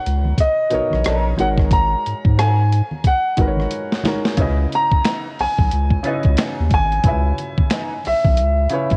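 Late-night and soulful, this 90 BPM neo-soul R&B excerpt in C# dorian swings gently over Bmaj9, G#9sus4 and C#m9 chords, with an intimate, boxy concert grand carrying the melody over a woody upright piano, a thick, saturated sub bass and a gritty, pitched-down boom bap kit of thumpy kick, high-tuned snare, hi-hat, rim click and finger snaps, while very quiet soft-handed congas sit underneath, a clean semi-hollow guitar with wah, chorus and tape echo drifts in the background from 1.1 to 7.9 seconds, a drum fill arrives at 3.7 seconds, and light reverb and cassette tape give it a small-room, home-recorded feel.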